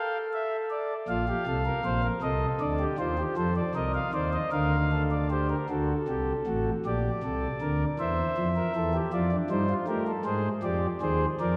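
Elegant and lively, this baroque-style three-part fugue for solo pipe organ moves in 6/8 on a warm, smooth principal stop with a crisp chiff, voiced in period fashion and placed up front. Spanning from deep bass to bright upper register, the lines pass through chords such as F/A, Cm and Bb/D before a second passage from 5.7 seconds turns through D7, Gm/Bb and C7/E to a closing Ab. The whole 11.6-second passage, cut from a longer piece, sits in a lush church reverb with a long 3.2-second decay.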